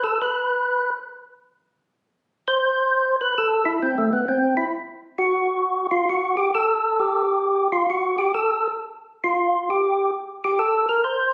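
Soulful and bluesy, this jazz excerpt swings at 133 BPM in 4/4 with a fat, lightly overdriven tonewheel organ up front, its third-harmonic percussion and vibrato colored by a slow rotary speaker as it solos from 0.0 to 8.8 seconds within the A3 to C5 range, all heard through a wet small room captured on a phone with added studio reverb and compression.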